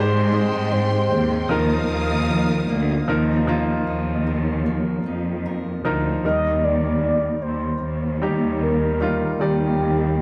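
A tender, emotional pop excerpt at 76 BPM in Eb major opens on a full blend: a round, horn-like synth lead carries the melody with chorus and phaser, over brilliant grand piano, a dark, bowed cello section up front on the bass, and fingerpicked steel-string guitar arpeggios set in the background. A soft-attack string section with vibrato and portamento holds sustained chords until 3.1 seconds, and the guitar stops at 6.8 seconds. Lead, piano and cellos continue through chords moving from Abmaj7 to Ebsus2 and settling on Ebmaj7, all in a light, small-room reverb.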